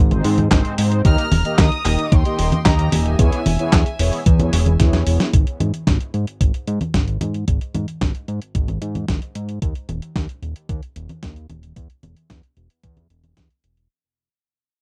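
A fat analog bass sits up front through this playful, sunny italo disco clip, its detuned sawtooth-and-square tone pushed through tube saturation and held in a low, sustained register. A thumpy electronic kick drives the straight 4/4 pulse beside a clean 12-bit drum machine carrying congas, handclaps, hi-hat and a medium-tuned snare, both sampler-style and re-recorded in a small room. Mellow synth brass stabs, round and dark with chorus, vibrato, a filter sweep and tape echo, color the opening. Above them, a clear, biting chamber violin section carries the melody from 1.0 to 4.8 seconds, with tape echo of its own. After a drum fill, the brass drops out at 5.3 seconds, and the bass and drums carry on through a long fade-out in this dry, close, 1970s-style studio sound.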